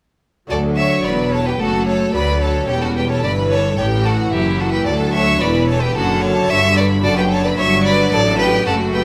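A moderate recital hall reverb surrounds this festive, lively excerpt of a baroque-style concerto movement in D major, moving at 110 BPM in a straight 4/4 over chords of D, A7/E, D and D/F#. Up front, a solo violin sings the melody with soft attacks, vibrato and expressive portamento, while a smooth-topped violin section carries a higher melodic line and a distant, clear second violin section adds a second line. Beneath them, a delicate fingerpicked lute with doubled nylon strings and a rich viola section fill out the accompaniment, and an intense, far-off double bass section joins a focused cello section in the background on the bass, every part playing from 0.5 to 9.0 seconds.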